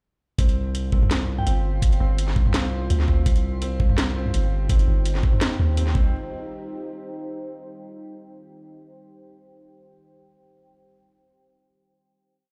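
At 0.4 s the piece drops straight in: a knocking electronic kick sits up front beside a deep, sine-toned 808-style bass playing chopped phrases. A layered drum kit adds a cracking snare, metallic closed hats and a low tom in a sparse, lightly swung half-time beat. Over this, a felt-muted upright piano loops a six-step arpeggio that drifts against the bar, its soft, vintage tone touched with digital delay. An eerie, inharmonic FM drone holds a high note in the background with chorus and reverb, and a gentle, warbling synth bell appears briefly with chorus, phaser and delay. A moody, detuned sawtooth pad with sidechain pumping arrives at 4.4 s, and once the beat falls away it sustains a final chord from 6.1 s, closing this cinematic, spacious half-time drum and bass piece in a stone-room ambience.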